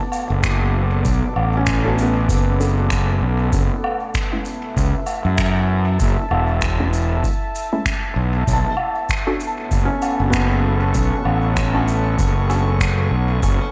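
Meditative and spacious, this ambient dub excerpt moves at 97 BPM in 4/4 with a swung sixteenth-note feel, cut from a longer piece. A deep, dark sawtooth pad with a slow attack and long release holds sustained chords through chorus and built-in reverb, while a soft, felt-muted upright piano plays arpeggios in the background, bathed in dub echo, drops out after the opening and returns at 8.5 s. Up front, a punchy fuzz-overdriven fingered electric bass anchors the low end alongside a deep analog kick re-recorded in a large room, with woodblock, shaker and finger snaps adding acoustic detail through their own dub echo. A very quiet, muted chord stab built from detuned sawtooth and square waves brings filter sweeps and phaser. From 9.0 s a calm, glassy texture of drifting sine overtones enters in the background, as the harmony moves from Bm9 to F#m7 and settles on B7sus2 under light reverb and studio ambience.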